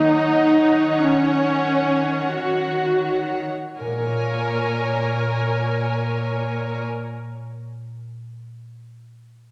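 A rich, close viola section carries the accompaniment up front in this moving, bittersweet orchestral film-score fragment, joined by a smooth, vibrato-laden violin section on a second line, a focused, lush cello section on the bass, and a thumb-plucked concert harp whose ringing arpeggios play on alone after the strings stop at 6.8 s, all set in a wet scoring-stage reverb over Ebm7 and then Bbm7 harmony.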